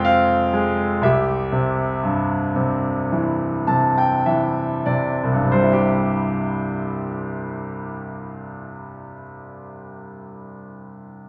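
A bright concert grand piano rings out up front on a moderate scoring stage, its brilliant, open tone carrying deep bass and long sustain in this short folk excerpt cut from a longer piece. Across the full 11.3 seconds, the piano carries a hopeful, tender melody in a straight four-beat feel, moving from F minor to C major. The pace slows through the opening phrase, where a piano fill arrives at 3.1 seconds before a second passage begins at 5.5 seconds.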